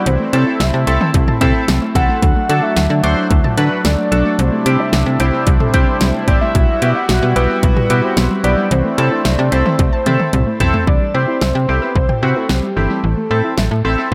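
Driving and nocturnal, this synth-pop passage at 111 BPM in A dorian sets a soft, round octave-layered lead melody with chorus, phaser and analog delay over warm analog keys and a bright, shimmering pulse-width pad that holds chords until 10.9 s, while a dark, gentle pluck traces arpeggios in the background. Up front, a snappy, metallic slap-like FM bass and an electronic pop drum kit with a punchy kick, fat snare, hi-hat, toms and cowbell drive the track, the drums playing a fill from 9.8 s that leads into the move to C at 10.9 s. A moderate spring reverb fills out the echo-heavy mix before this excerpt of a longer piece cuts off.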